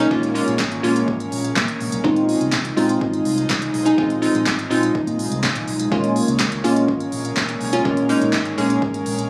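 A glassy, crystalline wavetable pluck sits up front in this bittersweet, driving dance-pop cut at 124 BPM in Bb minor, its detuned, decaying notes shaped by a moving notch and a filter sweep and pulsing with sidechain pumping and chorus over Bbm7 and Fm7 chords. Beneath it, an airy, breathy pad holds slow-attack chords with a long release. A dark, round, foam-muted electric bass pumps in the low register, while a punchy deep house kit of kick, snare, handclaps and smooth hats drives from 0.1 s, with a barely audible downlifter ending by 2.0 s, all captured by a phone in the room under light reverb.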